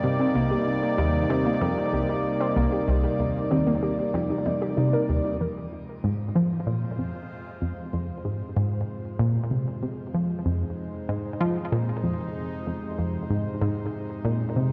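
A tight, driving sequenced synth riff sets a straight, steady pulse in 4/4, its detuned sawtooth tone mellow and up front, with a quick plucked filter snap. This is mysterious, hypnotic ambient space music cut from a longer piece. A sweeping resonant pad holds sustained chords throughout, its bright, evolving sawtooth slowly opening through a filter swell. A warbly, dusty lo-fi pluck adds ring-modulated arpeggios with short decay, then drops out at 5.3 s. The harmony shifts from Cm7 to Fm at 5.4 s, where an analog pad fades in and carries on to 14.7 s. Chorus and shimmer reverb coat every part, delay trails the riff and the pluck, and a dark, wet concert-hall ambience surrounds the sound.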